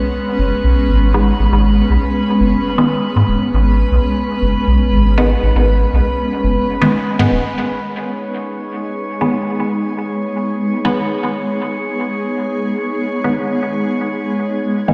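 A cloudy, blurred granular pad holds sustained chords in G# minor alongside a calm, glassy texture of drifting overtones softened by chorus, opening this deep, nocturnal slice of dub techno at 119 BPM. A round, soft sub bass sits up front until 7.4 s, while from 1.1 s a muted, detuned chord stab with phaser and dub echo plucks through a filter sweep. The whole plays in a lush hall reverb with the stony ring of a bare room heard over a big sound system.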